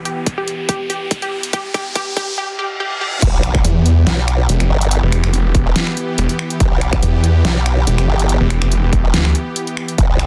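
Chaotic and heavy, this wobble dubstep clip, cut from a longer piece, moves at 142 BPM in a half-time 4/4 feel with light swing on the sixteenths, sitting in E phrygian over an E minor chord. It opens with a build-up: a lush, airy supersaw pad holds sustained chords under a filter sweep and sidechain pumping, while a detuned unison pluck sounds a short G4 melody trailed by dub echo, and a drum fill and electronic riser run together until a reverse cymbal leads into the drop at 3.2 seconds. There an impact hits, and a formant-sweep wobble bass enters, saturated and chorused, soon joined by a snarling, growling saw bass whose bright, detuned distortion sits loudest in the mix from 3.6 to 9.3 seconds. Underneath, a punchy overdriven electronic kick pairs with a layered kit of deep snare, hi-hat, finger snaps and crash cymbal, also overdriven and re-recorded in a small room. The master is dense and heavily limited, with a digital ambience and a high-pass filter giving a crowded, modern sound.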